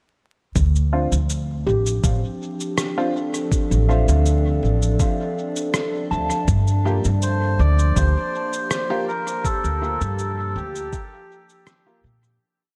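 A light reverb, vinyl crackle and lossy compression artefacts give this short, whole ambient dub piece a meditative, spacious haze, with a fade-out beginning at 8.5 seconds. From 0.6 seconds a pitched-down, muffled electronic kick thumps softly and slowly beneath a sparse, echoing beat of cabasa and rim click, while a woody, gut-strung upright bass plays a pizzicato dub-style line up front in the mix. A warbling, lo-fi tape-like pad with chorus and its own reverb holds slowly shifting chords, moving from Dm7 to Gm7, as a worn, slightly detuned upright piano drops sparse, close-voiced chord stabs through a low-pass filter and dub echo. A soft, pure FM synth bell, treated with chorus, phaser and echo, spins four slow arpeggio loops of unequal length that drift against each other. At 7.2 seconds a reedy, breathy melodica enters up front with motif-based call phrases trailing dub echo.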